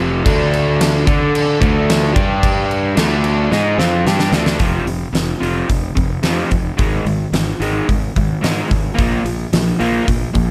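Set in a small room with light reverb, this brooding, swaggering classic rock fragment pairs a crunchy, double-tracked overdriven guitar riff up front with a growly, fuzz-soaked fingered bass, while a huge arena drum kit with a fat snare, punchy kick, hi-hat and crash cymbal joins at 0.3 seconds and plays a fill from 3.5 to 4.6 seconds that leads into the second section.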